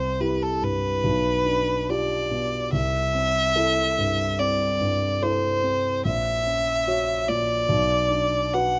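A clear, smooth, even violin with vibrato sings the melody over a dark, mellow concert grand piano with deep bass, both entering together at the start of this solemn, yearning romantic classical duo. At 72 BPM in 4/4 with a flexible, rubato feel, the harmony moves from C through G7/B and C6 to F#7/A# before settling on Bm near 7.7 seconds. Close, detailed microphones place both instruments up front in light reverb, and the passage is cut from a longer piece.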